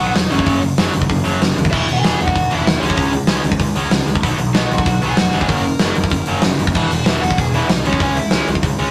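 The big rock drum kit sits up front in a roomy, mid-forward sound with a tight kick and a medium-tuned snare, entering at 0.2 seconds to drive this upbeat, rebellious punk rock excerpt at 191 BPM in E lydian. A bright, double-tracked distorted guitar picks the riff while a warm, overdriven garage guitar carries the melody high above, and a growly fuzz bass anchors the bottom. Chords move from F#5 through E, C#5, B, F# and E again to C#m, all caught in a rough rehearsal-room recording with light reverb.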